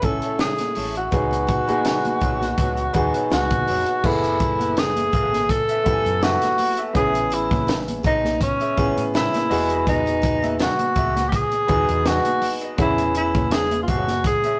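A breathy, subtone tenor saxophone with scooped notes and vibrato carries the melody up front from the first moment, joined at once by an intimate baby grand piano with audible action noise, a round hollow-body electric bass, a dry cocktail drum kit with dark cymbals, a punchy kick and a high-tuned snare, a twangy, slightly broken-up guitar riff in the background, and a very quiet shimmering triangle; soft-handed, high-tuned congas arrive at 0.4 seconds. This is lush 1970s-style soul in F# dorian at 82 BPM with a gentle 16th-note swing, its bittersweet, silky mood coloured by chords such as F#m11, Amaj7 and Emaj7. The rough rehearsal-room sound adds tube saturation, a dulled top end and a moderate stone room reverb, and the passage is cut from a longer piece.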